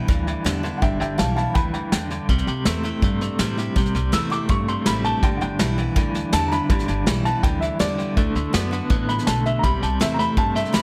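A straight 4/4 rockabilly beat from an up-front brush kit with a punchy kick and a thumpy pizzicato upright bass on gut strings drives this retro, rowdy excerpt, as a twangy, slightly broken-up electric guitar plays its riff with tremolo, a bright dreadnought acoustic guitar picks the accompaniment, and a dark, woody upright piano with short sustain takes the solo melody through plate reverb and analog delay, inside a light reverb.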